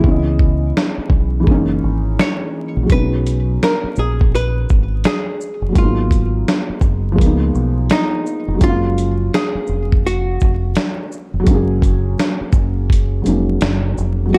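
A dusty, sampler-style drum kit anchors this cosy, dreamy lo-fi hip hop excerpt, its thumpy kick, medium-tuned snare, hi-hat and shaker sounding gritty and compressed, re-recorded in a large room and placed up front. The groove sits at 84 BPM in 4/4 with a 61% swing on the sixteenths, in F# major. A deep, round fingered electric bass adds punchy low end, while a felt-muted upright piano supplies soft, boxy, intimate chords with audible action noise and a cassette-tape tint. Over them, a clean, picked hollow-body archtop guitar carries the melody in a dark, compressed tone. The harmony moves through jazzy colours such as C#m9, B69 and F#maj7, with a break in the opening 2.9 seconds, and the whole is wrapped in light reverb, digital ambience and vinyl crackle for a dark, warm finish.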